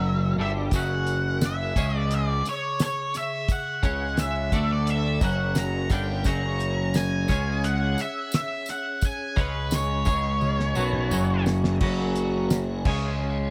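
Dark and hypnotic, this psychedelic rock passage moves at 87 BPM in a straight 4/4, cut from a longer piece and built on F# and C#5 harmony with a turn to D5. A bright, twangy twelve-string electric guitar riff, flanged and double-tracked, sits up front beside a punchy, overdriven fuzz bass, while a dark octave-fuzz lead guitar carries the melody through wah, distortion and tape echo until 11.4 seconds, and a piping, scooped tonewheel organ holds chords in the background through slow rotary speaker and chorus vibrato, key click audible. A cloth-damped, thuddy drum kit with a fat snare, tight kick and rolled-off top enters at 0.7 seconds alongside a jingly background tambourine, and a drum fill from 10.4 seconds leads into a brief closing section, all set in a small room within an echo-heavy mix.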